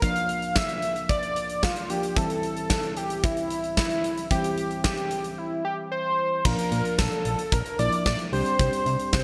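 Nocturnal and melancholic, this short synth-pop passage, cut from a longer piece, moves in a straight 4/4 with a bright 1980s-style digital sheen. An octave-doubled lead carries the melody up front, its bold, retro sawtooth-and-triangle tone detuned and sustained, with chorus and vibrato. Beneath it, soft electric-piano-like synth keys supply a round, mellow accompaniment, gentle and warbling with a filter sweep and chorus. A huge arena drum kit sits up front, its punchy kick, medium-tuned snare, hi-hat and crash cymbal treated with gated reverb. The harmony moves from Bb to C, and at 6.5 seconds a solid FM bass enters, dark and punchy with a fast, decaying attack, as the chords return to Bb and then shift to Csus2, all within moderate plate reverb and small room ambience.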